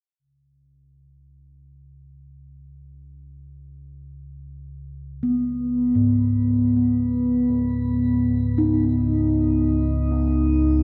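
Unsettling and ominous, this dark ambient drone unfolds in free time, cut from a longer piece. A deep, rumbling drone fades in from 1.0 seconds and sustains between C#2 and C#3, its warbling, vintage, wave-folded tone blending triangle, sawtooth and sine shapes with a slow attack, long release and its own built-in reverb. At 5.2 seconds a bronze singing bowl enters with ringing, metallic arpeggios from G#2 to D#4, struck with a felt mallet and carrying a meditative slow beating. The bowl sits up front, mellow and soft, trailed by analog delay and shimmer reverb. A wet plate reverb and an echo-heavy mix with dulled highs give the space a dark cast, with the harmony resting on C#.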